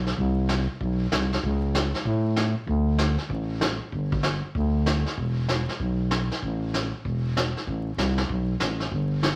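Playful and swinging, this short country western swing excerpt moves at 192 BPM in 4/4 with a swung eighth-note feel, as a growling, thick FM bass with a fast attack and sustained tone sits up front from the start, joined at 0.1 seconds by a vintage acoustic brush drum kit of brushed snare, hi-hat, punchy kick and medium-tuned snare, its sound natural and rolled-off at the top, all set in a moderate studio reverb with a layer of vinyl crackle.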